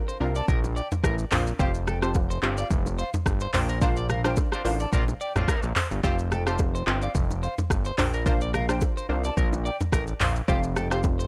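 Afrobeats excerpt with a joyful, sunny glow, built on a deep-kicked electronic afro-pop kit with crisp hats, a fat detuned analog bass, a round evolving analog pluck with chorus, a twangy, slightly broken-up guitar riff with tape echo, and soft, close congas and bongos, while a breathy, hollow jazz flute sits distant in the background and a tight vintage horn section doubled in octaves bursts in briefly at 4.5 s over a band accent, all framed by digital ambience on a dry, gritty hardware recording moving between Bbadd9 and Fsus2.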